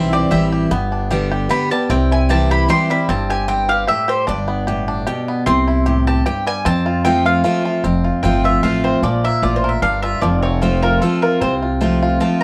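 An up-front, woody mandolin takes a lively, virtuosic solo through the first 7.8 seconds of this bluegrass excerpt at 151 BPM in 3/4, while a twangy banjo played with fingerpicks carries its own melody, a bright, full-bodied dreadnought guitar picks the accompaniment and a growly, thumpy pizzicato upright bass holds the low end, all under light reverb as the music settles into F major from 7.8 seconds.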